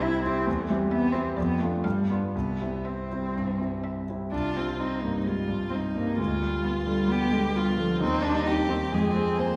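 Spirited and cheerful, this excerpt from a quick classical-period piano trio movement with a rubato feel pairs a warm, expressive bowed violin melody and an up-front cello second line, both sung with vibrato, soft attacks and portamento, over a clear, intimate grand piano accompaniment with long sustain and audible action noise, all heard from further back in a wet recital hall.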